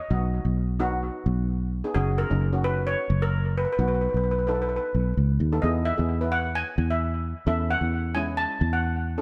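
Set in moderate echo-chamber reverb, this bouncy, sunny calypso fragment puts a bright, shimmering lead steel pan, struck with hard rubber sticks, up front on the melody, while an airy double-seconds pan on medium rubber sticks supplies the accompaniment, both trailed by analog delay, over a round, foam-muted fingered electric bass that sits dark and direct beneath a B, F#, B, E, A/E progression.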